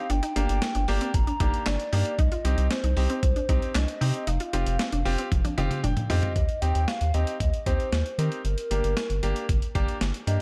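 A hollow, woody clarinet-like synth lead with chorus and vibrato carries the melody over a brilliant concert grand piano from the very start of this cool, nocturnal synth-pop cut, soon joined by a round, deep analog bass up front, a gritty, compressed breakbeat sampler-style kit of thumpy kick, snare, hi-hat, toms and handclaps, and a squelchy, resonant blip pluck playing chorused, tape-echoed arpeggios until 6.3 s, with drum and piano fills from 5.3 s leading into a new section at 6.4 s, all in a dry, close sound.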